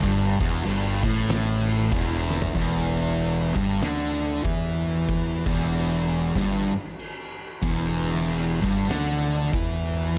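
A sludgy, brooding slab of stoner and doom metal opens at once with a fuzz guitar riff, a fingered electric bass and an oversized, low-tuned acoustic drum kit all starting together on an E minor chord. The guitar sits up front, picked, distorted, double-tracked and compressed into a thick fuzz that fills the low register. Underneath, the bass is round and overdriven, carrying tube saturation and its own fuzz from a blend of direct and amped tone. The drums bring a punchy kick, a fat snare, toms and dark crash cymbals in a bright stone room that pumps, and a drum fill between 2.2 and 2.6 seconds leads the riff into a new section. The loping swung groove rolls on under a dark, warm production with light studio reverb until the drums stop at 9.7 seconds, leaving the guitar and bass to continue to the end of this cut from a longer piece.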